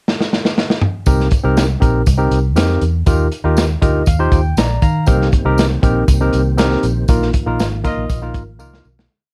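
A dark, dry production carries this joyful, uplifting 1960s-style soul piece, where a crunchy, gritty breakbeat kit drives a backbeat groove from a pickup-bar fill, a round, foam-muted fingered bass plays a syncopated line with slides and chromatic approach notes, a barky, lightly overdriven tine electric piano plays rhythmic close-voiced chords and slips in a short fill, a jingly tambourine marks every beat in the background, a very quiet tonewheel organ with key click and slow rotary swirl adds a sustained pad from 5.1 seconds, and a warm horn section hits a brief punch at 7.9 seconds as the band accents its final chord into the fade-out.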